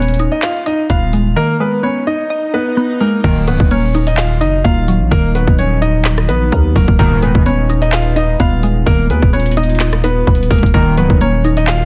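A concert grand piano carries the melody from the first second, its tone warm, smooth and vintage with a deep low end and short sustain, softened further by a low-pass filter. Beside it, a glassy, crystalline wavetable pluck plays accompaniment with a nasal edge and a layer of noise, thickened by chorus. Underneath, a growling, buzzy 808-style bass sits up front with the trap drum kit, whose hard-clipped kick, woody snare, metallic hi-hats, handclaps, rim clicks and crash cymbal drive a half-time feel at 128 BPM in Eb minor. An electronic swell enters at 2.0 seconds. Brief stabs from a retro, glossy polysynth with chorus and a filter sweep sit in the background, followed by a moody sawtooth pad with a sub octave, chorus and phaser that holds sustained chords from 4.1 seconds. The dark, eerie hip hop excerpt has digital ambience and a dense, heavily limited modern master.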